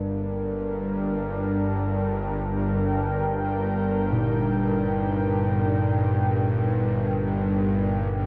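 Dark ambient drone in free time and G minor, ominous and dark, where a tense, string-like bowed drone with bright vibrato sits low beneath a deep, moody pad of sustained Gm chords dressed in chorus and shimmer reverb that fades out across the 8.3-second cut, while a ringing bronze singing bowl with slow beating enters at 4.1 seconds in diffuse delayed arpeggios, all washed in a huge reverb and the warbling pitch drift of worn cassette tape.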